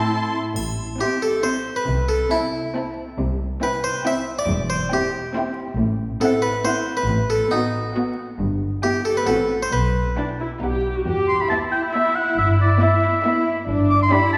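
A playful, whimsical cinematic film cue in triple metre, with a sneaky, magical mood, moving from A minor toward E minor. A bright, airy harpsichord carries the tune up front from 1.0 to 10.8 seconds, over bowed string sections heard from further back in a wet concert hall: a dark, woody violin section holding the high melody and a lush, focused violin section on a second line, both in the background, with smooth, even viola, cello and double bass sections filling out the accompaniment and bass. A dry triangle sounds briefly near the start, and a clear, up-front solo oboe joins on a second line at 11.3 seconds as the fragment breaks off.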